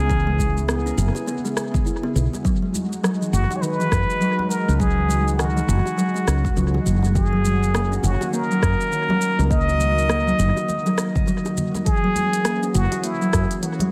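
A plunger-muted trumpet with a bright, wah-wah jazz voice carries the melody up front from the first moment, trailed by analog delay, over a detuned sawtooth pad whose chorused, warbling chords pump with the sidechain and a growly, round fretless bass that also pumps and sits forward in the mix. A thumb-plucked kalimba adds short, woody arpeggios soaked in tape echo, while a deep electronic kick, a deep house kit of smooth hats, rim click and shaker, and very quiet, hard-hand congas and bongos keep a swung groove. The result is an earthy, warm organic downtempo excerpt, light on reverb but heavy with echo.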